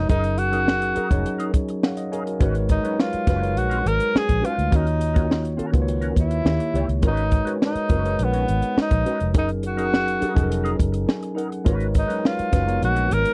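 A breathy tenor saxophone carries the melody of this lush 1970s-style soul excerpt, its whispered subtone, light vibrato and scooped notes giving the cinematic, silky mood an intimate, jazz-flavoured voice. Beneath it, a worn, slightly out-of-tune tine electric piano plays through its built-in speakers, adding short fills at 1.5 and 10.8 seconds. A foam-muted fingered electric bass gives a round, amped low end, while a mellow, fingered electric guitar plays a riff through a wah. The compact cocktail drum kit, with its high-tuned snare and punchy kick, sits up front alongside the saxophone. Over a straight four-beat feel, the harmony circles through F#69, G#m11, D#m7 and a brief D#7b9, all captured in a dry, close studio sound.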